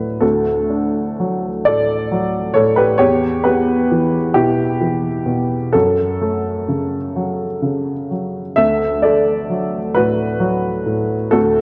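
Moving in a slow, rubato 6/8 at 43 BPM with uneven, breathing beats, this tender and peaceful neoclassical minimalist piano excerpt in D major drifts from D through E minor and F-sharp minor before settling back on D at 8.6 seconds. A solo upright piano, woody, worn and slightly detuned, sits up front and spans D2 to E5 across the full 11.6 seconds. The sound is bathed in moderate concert hall reverb and colored by worn old cassette tape with a warbling pitch drift.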